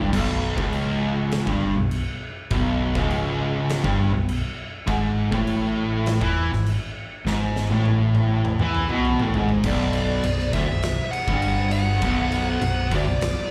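Brooding and heavy, this stoner and doom metal excerpt moves at 101 BPM in B dorian, captured as a live gig heard through the venue's PA with club reverb and small room ambience. An up-front, double-tracked fuzz guitar riff with slapback echo plays over a round, dark hollow-body short-scale bass with overdrive, while an oversized low-tuned drum kit brings a punchy kick, fat snare, dark cymbals and a gritty, pumping stone-room sound, with a drum fill from 7.3 to 9.6 seconds. At 9.7 seconds a dark fuzz lead guitar enters with a melody, coloured by slapback and tape echo, as the harmony moves from Bsus2 and Eadd11/G# to Bm.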